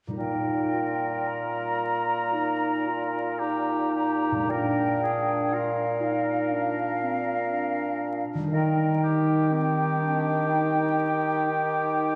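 Tender and lyrical, this slow, rubato romantic orchestral passage in Eb major, moving at 54-61 BPM in 4/4 and cut from a longer piece, opens with a ringing, thumb-plucked concert harp playing arpeggios at 0.1 s, joined at 0.2 s by a hollow flute with vibrato, a clear oboe and a mellow, distant clarinet carrying second lines, and a warm, up-front bassoon accompaniment, all bathed in a wet concert hall reverb with vinyl crackle as the harmony settles from Eb/Bb onto Eb at 8.5 seconds.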